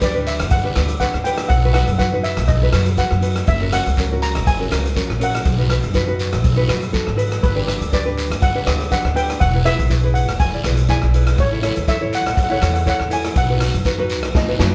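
Calypso with a carefree, sunny feel and a light swing, where a shimmering steel pan carries the melody over fingerpicked nylon-string guitar, woody pizzicato upright bass, an up-front drum kit with a punchy kick, hi-hat, rim click and snare, and a raspy guiro, all playing together in one room with moderate reverb before a drum fill at 14.3 seconds closes this cut from a longer piece.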